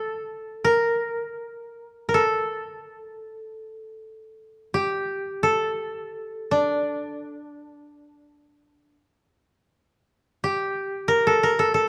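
Japanese traditional chamber music, this short passage cut from a longer piece unfolds in free time with an austere, calm mood. A solo koto carries the whole 11.9 seconds, its fingerpicked strings sounding dry and woody, staying within a compact range from D4 to Bb4. The instrument sits up front in the mix, giving each plucked note a close, intimate presence. A light reverb surrounds the playing, and the production leans dark and warm overall. The result is spare and contemplative, letting the koto's natural resonance speak on its own.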